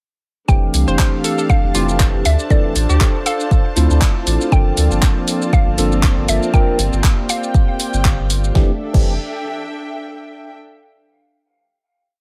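Sunny and relaxed, this deep house piece at 119 BPM in F major rides a deep, tape-warm four-on-the-floor kick and a fat-snared kit of claps, hats, shaker and crash, with a round sine sub bass riff up front, bright tine electric piano stabs through phaser and digital delay, a smooth detuned analog pad pumping in the background, dark bowed strings that ring out last until 10.5 s, a woody FM mallet pluck carrying the hook with dub echo, and a hollow square pluck adding short bouncy phrases between 0.9 and 4.0 s, in a dry, close mix.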